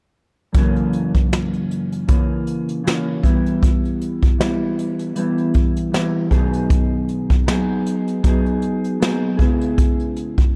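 A mellow electric guitar, clean, dark and fingered, sits up front through a lush chorus and vibrato effect, moving from F#7 to Em, B6 and C#m7 across this short cut from a longer piece. Alongside it, a jazz brush drum kit with a boomy kick, medium-tuned snare and hi-hat plays acoustic and up front in a studio room, both parts running from about 0.5 seconds to the end. This dreamy, sunny indie and bedroom pop moves at 78 BPM in 4/4 with a light 16th-note swing, framed by a dark, warm production.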